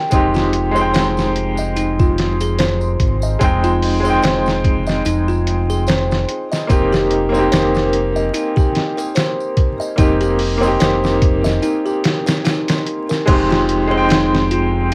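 Heard through cassette warmth and vinyl crackle in a snug booth, this melancholic, cinematic trip hop piece moves at a slow 73 BPM in 4/4, with a lazy swing on the sixteenths and a home-made intimacy. A gritty, pitched-down sampler drum kit sits up front, compressed and tape-soaked, with a thumpy kick, a medium-tuned snare, hi-hat and crash carrying that vintage 12-bit crunch. A bright upright piano, also close and prominent, lays down woody accompaniment with audible action noise, long sustain, tremolo and tape echo. A delicate, tinkling music box spins arpeggios through analog delay and plate reverb, while a round, deep analog bass holds the low end with saturated, mellow sustain. A tambourine sits quietly in the background until 13.2 seconds. The harmony drifts from Fm7 to Cm7/F in F minor, a break arrives at 11.6 seconds, and the passage returns to Fm7 at 13.3 seconds for a brief new section before this fragment of a longer piece is cut off.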